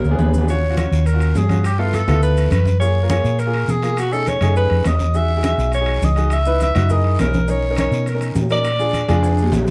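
A drum fill opens this sultry, driving Afro-Cuban jazz cut in Eb minor at 206 BPM, as a breathy, roomy alto saxophone with vibrato carries the solo melody up front over a round, dark hollow-body electric bass, with ringing congas struck with hard hands and grainy maracas tucked in the background. A clear, woody upright piano comps through extended chords, while metal-shelled timbales sound distant in a large room, raspy guiro joins at 0.5 seconds, and a second fill arrives at 9.2 seconds. The production is dark and warm, with moderate studio reverb.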